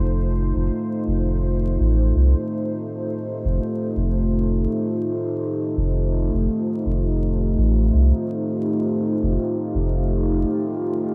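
Ambient dub at 83 BPM in F mixolydian with a light 16th-note swing, this spacious, peaceful fragment cut from a longer piece rests on a single F9 chord, held by a deep, moody pad of detuned sawtooth voices with chorus, built-in reverb, 12-bit sampler grit and cassette tape colour, over a round, mellow sub bass that stops at 10.4 seconds while the pad sustains to 11.1 seconds, all set in a moderate booth ambience with home-cassette character and vinyl crackle.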